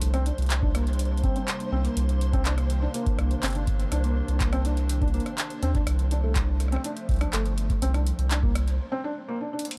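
A straight 4/4 pulse from a booming analog drum machine with metallic hats, handclaps and rim clicks, plus a deep tape-warm electronic kick, carries this melancholic, intricate IDM excerpt, where a round, up-front analog bass anchors a warbly, nostalgic tape-like pad that holds chords with chorus and phaser under filter-swept, felt-muted upright piano arpeggios with tape echo and audible action noise, while a grainy, flickering granular texture pumps in the background until a break at 8.8 seconds leads to a drum fill at 9.5 seconds, all in a dark, dry production.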